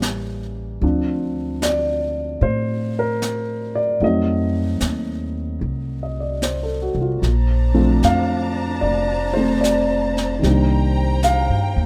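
A dark, mellow grand piano with audible action noise accompanies this tender, romantic swung jazz ballad alongside a woody, thumpy upright bass and a brushed drum kit with a high-tuned snare, and a lush, bowed string section with vibrato and a soft attack enters at 7.2 seconds, all in a dry, intimate sound.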